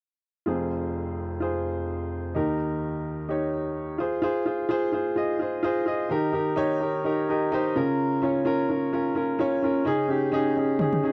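A lightly swung pulse in 4/4 carries this piano-driven pop piece, which is cut from a longer work and has an earnest, bittersweet mood as it moves through minor-key chords. A clear, woody upright piano with long sustain sits up front in a dry, close 1970s-style studio sound with light reverb, playing accompaniment from 0.5 seconds and adding a fill around 7.0 seconds. Near the end, layered electronic toms, re-recorded in a small room, enter for a brief fill at 10.8 seconds.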